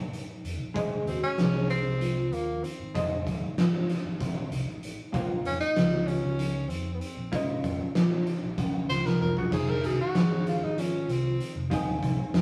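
A rough rehearsal-room recording with light reverb captures a brooding, intricate progressive instrumental in 7/8 at 192 BPM in eighths, cut from a longer piece, where a bright, up-front tenor saxophone solos from 0.8 s with light vibrato and scooped notes over mellow soft-mallet vibraphone arpeggios with fast motor vibrato, a growly picked electric bass, clean, compressed hollow-body jazz guitar accompaniment entering at 0.7 s, and an oversized low-tuned drum kit with a fat snare and punchy kick, gritty and saturated, that plays a fill at 9.1 s as the harmony moves through Bbmadd9 to Fm7.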